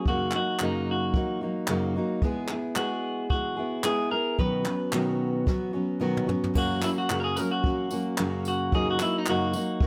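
A full-bodied, fingerpicked steel-string acoustic guitar, with audible finger squeak, opens this tender, wistful acoustic pop piece, cut from a longer work, alongside a clean, picked electric guitar carrying the melody. From 0.1 seconds, a jazz brush kit with dark cymbals, a high-tuned snare and a boomy kick adds handclaps, tambourine and toms, all kept up front in a natural studio room under light reverb. A drum fill from 5.5 to 6.6 seconds leads into a new section over a lightly swung 4/4 feel.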